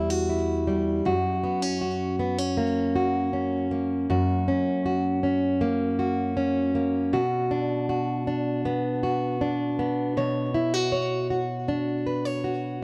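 A straight 4/4 pulse at 79 BPM sets an unhurried pace for this short pop passage in B harmonic minor, cut from a longer piece and lasting 12.8 seconds. A fingerpicked, plugged-in steel-string acoustic guitar plays alone throughout, its jumbo body giving a full-bodied tone that sits up front, spanning E2 to C#5 and trailed by a digital delay. The harmony moves from Emadd9 to F# at 1.1 seconds, settles on Bm at 7.1 seconds, then opens into Bmadd9 at 10.2 seconds. Light reverb surrounds the recording, while a worn, warbling cassette-tape character adds pitch drift that deepens its longing, melancholic mood.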